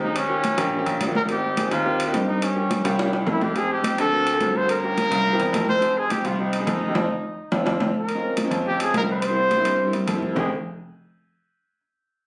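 A straight 4/4 pulse at 212 BPM drives this fiery Afro-Cuban jazz excerpt in F minor, where a warm trumpet with light vibrato carries the melody up front over a brilliant, long-sustaining baby grand piano on the bass line, a clear, woody upright piano comping through chords such as Abmaj9, C7b9 and Fm9, thin-skinned congas played with soft hands in the background, and ringing metal-shell timbales, with fills at 3.0 and 7.4 seconds and a band accent from 7.0 seconds, heard through a phone recording with club reverb and compression.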